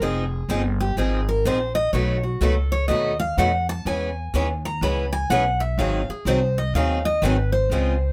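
This lively, playful slice of acoustic string swing in the jazz manouche style opens with three picked steel-string acoustic guitars and an upright bass all sounding together from the first beat, at 125 BPM in 4/4 with a 64% swing on the eighth notes and tuning set to A4 = 436 Hz. Out front, a full-bodied dreadnought guitar carries the solo across the whole 8.1 seconds in its upper register, with audible finger squeak adding to its close, detailed presence. Beneath it, two accompanying guitars fill out the middle: a boxy concert guitar with a warm tone, and a brighter parlour guitar, both stopping at 7.9 seconds. The woody, dark upright bass, plucked on gut strings, sits thumpy and up front in the low register. The harmony moves through Fm7, B7, E6 and Ab7 under light reverb, and the passage is cut from a longer piece.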